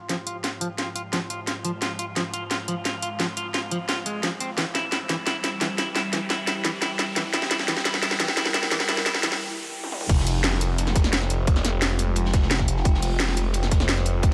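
A lush digital hall wraps this futuristic, aggressive slice of dark technical drum and bass, cut from a longer piece and running at 174 BPM in F harmonic minor. A deep, moody pad with a warbling vintage character holds sustained chords from the start, pumping against the beat, while a bright, clean semi-hollow electric guitar picks arpeggios through a low-pass filter and tape echo, its filter sweeping across the build-up. Underneath, a layered electronic drum kit with a cracking snare and bright hats drives a long drum fill, and a very quiet riser builds toward a short break at 9.4 seconds. The drop lands at 10.1 seconds, bringing in a tight, overdriven kick up front, a swirling, thick detuned saw bass with phaser and overdrive, and a saturated breakbeat kit with dark cymbals sitting in the background. The harmony moves from Fmadd9 to C and back to Fmadd9 as the drop hits.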